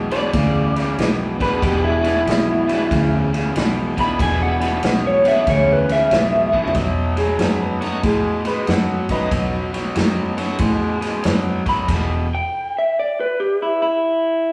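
Gritty and laid-back, this electric blues shuffle rolls along at 94 BPM in 4/4 with a swung eighth-note feel, centred on E mixolydian and moving from E9 to B9 before landing on E5 near the close of this short cut from a longer piece. An overdriven, picked electric guitar carries the low riff up front, while a round, dark, foam-muted fingered bass anchors the bottom and a vintage acoustic kit with a punchy kick, medium-tuned snare, ride, crash, toms and a rolled-off top drives the groove, adding a drum fill at 6.4 seconds. Over this, a slightly broken-up, lo-fi lead guitar through a small old amp sings the melody with spring reverb, dropping out after 6.7 seconds and returning at 11.7 seconds to play alone at the end. A full, shouting tonewheel organ with key click, light overdrive and a slow rotary speaker sits in the background, and from 7.2 seconds a brilliant, woody upright piano adds a second line. 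The whole band sounds like it is playing live in one room, wrapped in moderate studio reverb.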